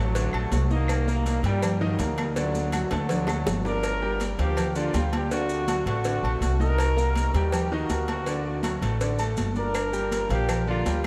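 A bright trombone section with light vibrato carries the melody through a delay in this fiery, passionate salsa excerpt at 162 BPM in G harmonic minor, backed by a clear, intimate baby grand piano with audible action noise, a thumpy, woody pizzicato upright bass up front, high-tuned congas, tight cowbell and bongos, ringing agogo bells and timbales, grainy, distant maracas, and very quiet claves that drop out between 3.5 and 9.8 seconds, with a drum fill from 2.4 to 3.8 seconds, all soaked in a huge, dreamy reverb.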